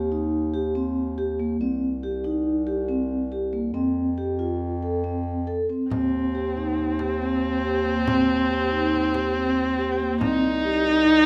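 In a straight 5/4 at 140 BPM, this restless, playful stretch of contemporary chamber music in Eb major opens with mellow, ringing vibraphone arpeggios played with soft mallets and a fast motor vibrato, above a distant, roomy bass clarinet playing the low bass line. At 5.9 s a focused, bowed viola steps up front with a smooth-topped second line, while a small, bright frame drum struck with hard hands sits in the background. The parts share a wet recital hall reverb, and the chords move from Eb6 through Cm and F before returning to Eb6 and Cm in this cut from a longer piece.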